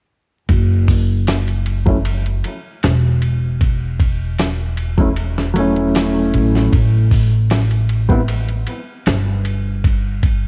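A woody, thumpy pizzicato upright bass and a gritty, compressed sampler-style drum kit open this smoky, melancholic trip hop excerpt at 0.5 s, with kick, snare, hi-hat and ride sounding as if re-recorded in a small room. At 1.9 s a dark, clean, fingered electric guitar enters, carried by harmonic tremolo, tape echo and a filtered sweep as the harmony moves from F#m7 to A7(no3) at 6.7 s. Light reverb and digital ambience surround the parts, while vinyl crackle and the warbling pitch drift of worn cassette tape give the sound its aged, hazy character.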